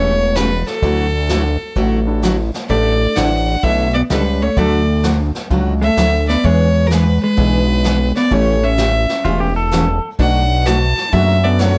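A lightly reverberant, swinging western swing excerpt at 128 BPM in D major puts a clear, intense bowed fiddle up front over a dark hollow-body jazz guitar, a bright picked dreadnought acoustic with finger squeak, a fat, nasal analog bass, and distant, roomy brush drums entering at 0.4 s, with a woody, very quiet upright piano joining at 2.1 s and a pedal steel guitar sliding in with volume swells at 9.2 s.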